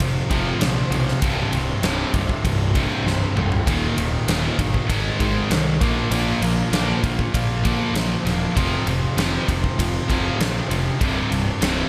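A dry, close-sounding hard rock excerpt with a driving, aggressive mood, cut from a longer piece and played in a straight 4/4. Three electric guitars share the riff throughout: a crunchy overdriven guitar and a scooped, high-gain distorted guitar sit in the background, while a tight, double-tracked distorted guitar carries a bright, picked edge. Beneath them, a picked electric bass with fuzz and overdrive fills the low end, heard both direct and through an amp. A huge arena drum kit sits up front in a pumping hall sound, with a punchy kick, a medium-tuned snare, toms, a ride and bright cymbals, and it plays a fill from 3.1 to 3.7 seconds. The harmony moves through F5, C5, Eb, Ab and Bb5 before returning to F5 and C5.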